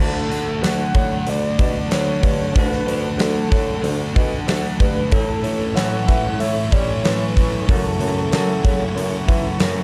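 A huge arena drum kit sits up front in this dreamy, wistful shoegaze and dream pop excerpt, its punchy kick, fat snare and hi-hat ringing in a hall sound from 0.3 seconds onward at a straight 94 BPM in 4/4. Beside it, a thick fuzz guitar plays a distorted, picked riff, while a second electric guitar through a small old amp adds a slightly broken-up, compressed riff in the background, colored by reverse reverb. A mellow, classical-style bassoon carries the bass line, and a round, horn-like sawtooth synth lead sings the melody with a soft attack, vibrato, filter swell, chorus and slapback echo. An icy, crystalline glass pad enters at 0.8 seconds, holding airy, detuned sustained chords behind everything else with chorus and its own reverb. The harmony moves from D to A to F#m7 in D major, tuned to A4 = 444 Hz, and the small room ambience gives the whole a dark, warm production.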